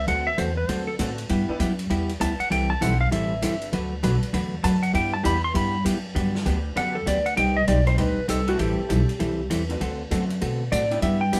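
A brisk 4/4 swing at 197 BPM drives this cheerful western swing piece in G major, cut from a longer performance. The upright bass sits up front from the start, its pizzicato gut strings woody and thumpy, while a distant, roomy drum kit keeps hi-hat, ride cymbal and snare going from 0.1 seconds. The clean, compressed lap steel carries the melody as a slide solo throughout, adding volume swells. A dark hollow-body jazz guitar picks out accompaniment, and a detuned, jangly honky-tonk upright piano joins in the background at 1.0 seconds. The chords move through D7, G6, Am7 and D6 before turning to Gmaj7 and Cm, with moderate reverb placing the band together in one live room.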